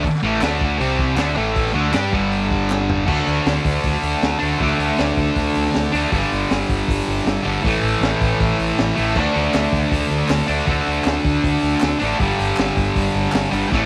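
Small room ambience surrounds this raw, swaggering garage rock excerpt from a longer piece, which drives along at 158 BPM in a straight 4/4. Up front, a thick, double-tracked fuzz guitar plays a bright, distorted, picked riff over D5, C5, A5 and G5 chords. Beneath it, a fingered electric bass growls with overdrive, its warm tone both direct and amped. The acoustic breakbeat kit sounds dark, saturated and gritty, with a punchy kick, a high-tuned snare, shadowy cymbals and a rolled-off top. A drum fill at 2.7 seconds leads into a new section at 3.1 seconds. A crisp group handclap sits close yet in the background, joining near the start and again toward the close.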